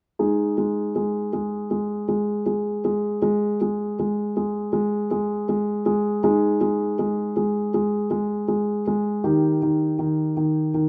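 In a straight 4/4 at 80 BPM, this elegant, playful classical-period sonatina fragment features a solo grand piano, warm and up front, ranging from Eb3 to Ab4 with close, detailed miking and light reverb, moving from an Ab harmony to Eb at 9.2 seconds before cutting off at 10.9 seconds.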